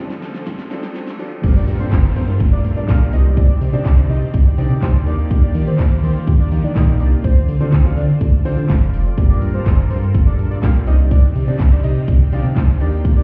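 A short dance-pop cut in G minor at 124 BPM opens on a build-up, where a clear baby grand piano, a softly filtered supersaw swell with sidechain pumping and a background riser and downlifter sit under a punchy, up-front pop drum kit playing a fill. At 1.4 seconds the energetic, confident drop arrives as a deep, dark analog bass pumps beneath the kick, fat snare, metallic hats, handclaps, shaker and crash. A mellow, wave-folded analog lead with tape echo and vibrato carries the melody over chords moving from Gm7 through Cmadd9, Ebmaj7 and Dm7, all set in a stone-room ambience that sounds muffled through a wall.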